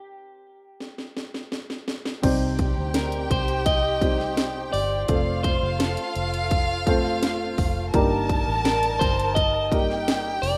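A punchy, up-front house drum kit carries this uplifting, hopeful piano-driven pop passage, its layered electronic kick and cracking snare pushed through overdrive and re-recorded in a large room, entering with a fill at 0.8 seconds after a brief stop. Above it, an electric guitar at the edge of break-up plays the melody from the very start, picked and twangy with a slightly broken-up tone, bathed in spring and plate reverb. At 2.2 seconds the full band arrives as the harmony settles on Cm, then moves to F and Eb/G: a dark, woody upright piano that is slightly detuned and mellow under plate reverb provides accompaniment, while a vintage foam-muted fingered electric bass adds a round, amped low end. A lush bowed violin section supplies a focused, smooth-topped second line with vibrato, and a breathy flute section holds soft-attack sustained chords with lifted highs in the background. The whole excerpt sits in moderate studio reverb with a rough home-demo character, a hopeful lift cut from a longer piece.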